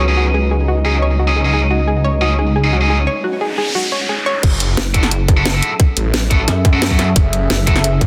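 Dark technical drum and bass with a mechanical, futuristic mood, cut from a longer piece. It opens on a swarming, granular drone and a deep, warbling ambient pad, both sitting in the background with built-in reverb and sidechain pumping. Beneath them, a thick, swirling detuned saw bass runs through a phaser and overdrive, while a round analog pluck with chorus and digital delay spins bright arpeggios and a scooped, high-gain electric guitar adds distorted picked stabs. A break brings in an electronic noise sweep at 3.3 seconds, and at 4.4 seconds the drop lands with an up-front layered drum kit, a cracking low-passed snare, filtered hats and crashes, and a tight electronic kick. A heavy, pulsing pluck wobble bass with chorus and tube saturation joins at 4.8 seconds, all set in light digital ambience and a dense, heavily limited modern master.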